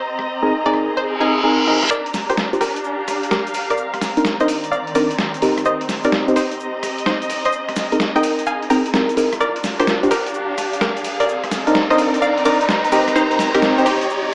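Soaked in plate reverb and softened by a low-pass filter, the mix has a dreamy, small-speaker sound on this soulful, sunny slice of two-step UK garage, cut from a longer piece and swinging at 128 BPM in 4/4. A bright, twangy, string-like resonator pluck carries the melody from the first moment, with chorus and analog delay on it, while a bowed studio string section adds a smooth ensemble texture marked by vibrato and portamento. A deep, mellow chord stab sits up front from 0.4 seconds, also treated with chorus and analog delay, and cycles through Bb9sus4, Gm7, Cm9 and Eb6. The sampler-style drum kit is compressed, pitched down and gritty with overdrive, its hi-hat, rim click and medium-tuned snare driving the groove, while a grainy acoustic cabasa joins in the background at 1.9 seconds. Filter sweeps shape the opening, then a reverse cymbal leads into a long build-up from 1.9 seconds, where an electronic riser climbs beneath filter sweeps on both the stab and the pluck.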